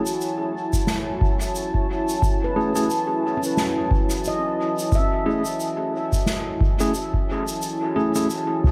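A small, lightly reverberant room holds this short, hazy ambient dub fragment at 89 BPM in F# dorian, resting on a single F#m7 chord with a gentle sixteenth-note swing. A dark, detuned sawtooth pad with a sub octave and chorus sits up front in slow-blooming sustained chords beside clean electric piano stabs thrown into dub echo, while a soft-mallet kit of shaker, fat snare and toms, also echoed, rides over a deep, tape-warmed analog kick that enters at 0.7 seconds. From 2.4 to 6.7 seconds a mellow stainless-steel handpan adds airy, ringing arpeggios through its own dub echo.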